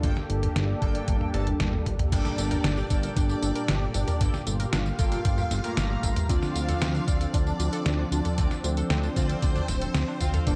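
Synthwave at 115 BPM with a driving, moody feel and a dark production under light reverb, where a thumpy electronic kick and an up-front 8-bit drum machine with a medium-tuned snare, crash, hi-hat, tambourine and toms (playing a fill at 1.1 s) sit alongside a fat, detuned sawtooth bass with sidechain pumping, while a brassy analog pad breathes in the background over Gmadd9 and Dm7 chords, a glossy, retro chorused polysynth adds stabs, a thick, nasal unison lead with tape echo carries the melody, and after a very quiet electronic swell at 1.5 s, a shimmering vintage string-machine violin line and a round, ring-modulated analog pluck arpeggio enter at 2.1 s.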